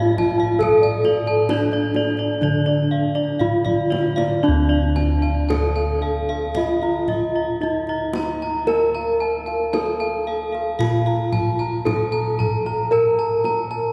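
A slow, straight 4/4 pulse moving between 57 and 71 BPM carries this hypnotic, shimmering Javanese gamelan passage in D pelog, cut from a longer piece. A bronze metallophone states the melody throughout, its ringing, full tone struck with a wooden mallet, close and dry, with paired tuning that sets up shimmering beats. Above it, a second metallophone played with a horn mallet and a set of bossed gongs both spin arpeggios, the metallophone bright and the gongs round and up front. Beneath them, bossed gongs carry the bass, dark and smooth, while the kendang sits distant in a large room with a tight, acoustic sound. A drum fill from 3.4 to 4.4 seconds leads out of the opening section into a longer second one, and the whole ensemble sits in a wet cathedral reverb of a church or concert hall, with a 6.1-second tail.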